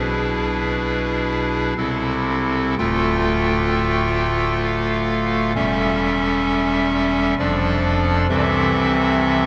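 In a rubato 3/4 at around 65 BPM, this grave, solemn chorale-style classical passage in A minor unfolds on a solo chamber organ, its clarinet reed stop sounding hollow and up front, with audible chiff and a tremulant across a span from D1 to G5. The harmony moves from E7/B through Am/C and Dm to A7/E at 5.6 seconds, then passes through Dm/F before settling back on Am/C. A cathedral reverb with a 4.5-second decay bathes the line, tuned to A4 = 441 Hz, in a fragment cut from a longer piece.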